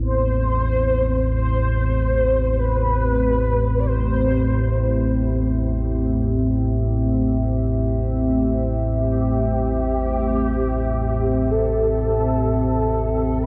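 Unsettling and cavernous, this dark ambient drone is cut from a longer piece and unfolds for 13.5 seconds, tuned to A4 = 438 Hz. At its foundation sits an ominous, rumbling drone, slow to rise and long to fade, its own built-in reverb and subtle chorus adding a shadowy depth. Above it, a moody analog pad holds sustained chords over a single C/A harmony, its detuned sawtooth body thickened by a sub octave and chorus. A mellow, horn-like synth lead carries the melody with a soft attack and a round tone, shaped by a filter sweep and vibrato and colored by phaser, ensemble chorus and delay. All three parts sound throughout and sit up front, bathed in a vast cathedral reverb that lingers for 5.6 seconds.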